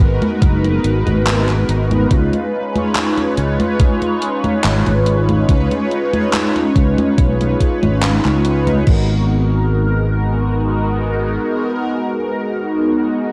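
Woozy and nostalgic, this 71 BPM vaporwave fragment in G# dorian drifts between G#m9 and C#7, with a dark, detuned sawtooth synth brass holding the chords through phaser, lush chorus and analog delay, a warm, up-front fretless electric bass with tube saturation beneath it, and a thumpy electronic kick beside a gated 80s digital drum machine of congas, crash cymbal, handclaps and hi-hat that both fall away at 9.0 seconds, all captured on cassette tape with light digital reverb.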